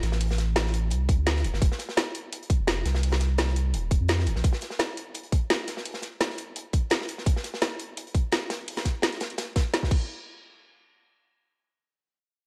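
Uplifting and lush, this excerpt of liquid drum and bass runs at 170 BPM in a straight 4/4, with a deep, round sine sub bass sitting up front from D1 to F2 until 4.4 seconds. A layered electronic drum kit with a woody snare, metallic hats and crash cymbal drives throughout, joined at 1.1 seconds by a tight electronic kick, while a gritty, saturated acoustic breakbeat kit with a medium-tuned snare and high-pass filtered hats, snare and room adds texture beneath. The production is dark, with light reverb.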